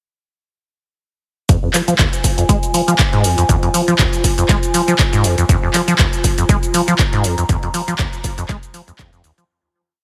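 A short acid house piece in F minor at 120 BPM with a swung 16th feel opens at 1.5 seconds on a driving, trippy groove, where an up-front four-on-the-floor electronic kick, a punchy analog drum machine with claps, hi-hats and shaker, and a rubbery, resonant sawtooth acid bass riff with accents, slides and filter sweeps, treated with lush chorus and digital delay, are joined at 1.9 seconds by a warbling, nostalgic, lo-fi pad of detuned square and triangle tones with chorus, reverb and sidechain pumping on slowly shifting chords, all under a heavily compressed radio-like sound with light reverb before a fade-out from 6.8 seconds.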